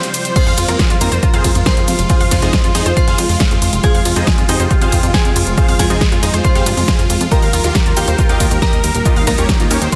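Euphoric yet bittersweet, this uplifting trance passage is cut from a longer piece and moves in a straight 4/4 feel. Huge, lush supersaw chords carry the melody from the first moment, their detuned sawtooth sustain pumping under sidechain and trailing tape echo, alongside a big-room dance kit with a huge snare, metallic hats, crash, ride and shaker that sounds layered and re-recorded in a small room. After a brief break, the dry, punchy electronic kick arrives up front at 0.4 seconds, together with a glassy, crystalline FM bell line treated with chorus, phaser and tape echo, and a bright unison pluck playing arpeggios in the background with a filter sweep and its own sidechain pumping. A plucky analog bass joins at 0.5 seconds, funky and wave-folded with a fast, decaying filter pluck that also pumps under sidechain. The harmony rests on F minor before shifting to E-flat at 7.3 seconds. Light reverb surrounds a dense, heavily limited modern master.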